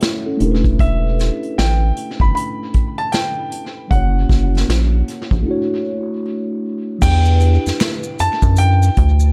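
Smooth and introspective, this short excerpt of neo-soul R&B sways at 77 BPM with a swung sixteenth feel in E dorian, as a mellow tine electric piano tinted by phaser and tape echo and an up-front vintage brush kit with dark cymbals and a punchy kick lay the bed, a rubbery, nasal square bass enters at 0.4 s, a natural-sounding baby grand piano carries a high melody from 0.8 s, and after a break at 5.5 s, maracas and finger snaps join quietly in the background at 7.0 s, the whole mix awash in echo and studio reverb.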